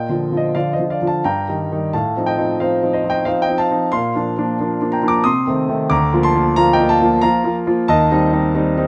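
A classical-period piano sonatina in 3/4, elegant and playful with a rubato feel, this brief excerpt features a clear concert grand piano, natural and up front with a deep bass, alone throughout its 8.9 seconds, captured by close, detailed microphones with light reverb.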